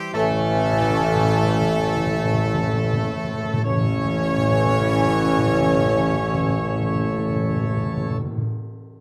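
Triumphant and majestic, this short excerpt from a longer classical piece is a ceremonial fanfare in A major, moving in a slow 3/4 at around 46 to 57 BPM and slowing down through its first 3.6 seconds. A bright trumpet section carries the melody with light vibrato, while a dark, distant trombone section and a French horn section with soft attack and vibrato hold sustained chords beneath it. A warm tuba sits up front on a low A, and a pipe organ plenum with full, brilliant mixtures and romantic voicing fills out the chords from the background. Timpani struck with soft mallets give a round, close and dry sound, playing a fill from 0.1 to 3.6 seconds and continuing until 8.4 seconds. The ensemble sits in a moderate large-studio reverb that lends the brass a roomy, stately grandeur, with the tuning set slightly low at A4 = 438 Hz.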